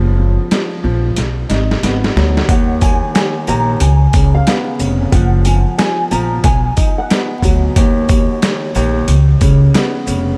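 Dark and tough, this boom-bap hip-hop excerpt rides a swung groove on a gritty, overdriven sampler-style drum kit with a thumpy kick and medium-tuned snare, a woody pizzicato upright bass up front, and a mellow, tape-worn upright piano laying down jazzy chords, while a deep, thumb-plucked nylon-string guitar melody with chorus and analog delay enters at 2.5 seconds alongside jingly sleigh bells tucked in the background, all under a layer of vinyl crackle and light studio ambience.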